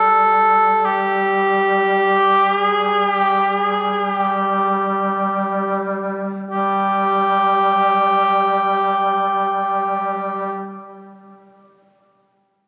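From the first moment, a warm, smooth-topped cor anglais sings a mournful, longing melody between G4 and A4 up front in classical style over a clear, distant duduk drone on G3 with vibrato and a soft attack in folk style, in this free-time Caucasian lament tuned to A4 = 438 Hz that slows through its first 6.5 seconds, captured on a phone in a room and bathed in wet church reverb, club reverb and compression in a brief excerpt from a longer piece.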